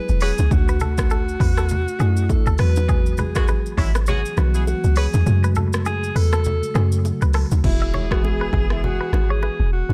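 Breezy, sunny afrobeats at 101 BPM in E mixolydian, where a smooth alto saxophone carries the melody over a mellow tine electric piano bathed in lush chorus, a deep, round, percussive log drum bass sitting up front, a punchy electronic drum kit with shaker and rim click, a tight warm horn section with vibrato, a bright, twangy picked electric guitar riff and very quiet ringing bongos and congas, all in a dry, close sound, with the kick dropping out at 5.3 seconds and the hi-hats falling away at 7.6 seconds as a new section begins.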